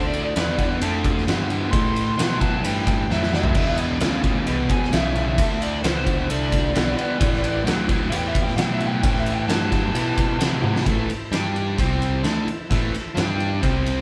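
A gritty, brooding slice of blues rock power-trio playing with a southern rock edge, heard as a band performing live together in one room with moderate studio ambience. A nasal lead guitar with a parked wah carries an overdriven solo line through the opening, stopping at 10.8 seconds, while a dark, double-tracked overdriven electric guitar pushes a picked riff up front. Beneath them, a bright, growly electric bass adds punch, and an oversized, low-tuned drum kit hits hard with a fat snare, punchy kick and dark cymbals, saturated in a big, pumping room, with fills at 3.1 and 10.6 seconds. A thick, overdriven tonewheel organ sits very quietly in the background, holding sustained chords through a slow rotary speaker. The harmony moves through rich minor ninth and dominant seventh colours before settling into a blunter riff on power chords for the closing stretch.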